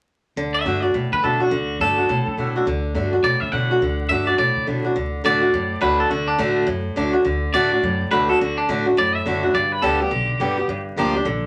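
An upbeat, rowdy rock excerpt at a fast 210 BPM in D major, swung in 4/4, with a twangy, clean electric guitar carrying the melody up front while a boxy parlour steel-string acoustic guitar, picked and bright with fresh strings and audible finger squeak, plays the accompaniment. A woody, thumpy upright bass with gut strings plays pizzicato underneath, and the harmony moves from a long stretch on D to G at 9.5 seconds and a Gm7 at 10.7 seconds. The trio sits in a short club reverb with vinyl crackle over the top, cut from a longer piece.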